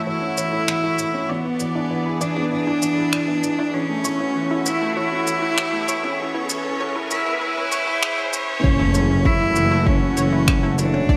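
Hypnotic and cinematic, this piano and strings electronica in F# minor at 98 BPM sets an up-front, intimate cello melody with light vibrato over a felt-muted upright piano riff with audible action noise and delay, a lush sidechain-pumped pad in the background, very quiet detuned pluck arpeggios and overdriven shaker and finger snaps, as a filter sweep and background riser build to a drop at 8.6 seconds, where a deep overdriven kick and a rich bowed double bass section arrive beneath an impact in a moderate recital hall.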